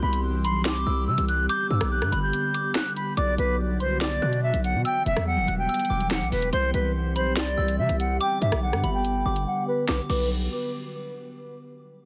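Tense and ominous, this half-time drill excerpt at 143 BPM in B phrygian sets a reedy, tongued concert flute melody with rolled-off highs and delay over a soft, pure FM synth bell line, a breathy detuned pad, a heavy distorted 808-style bass and a sharp, bright drill kit, all kept dry and densely limited, with a filter sweep from 3.2 to 9.9 seconds and the drums dropping out at 9.5 seconds.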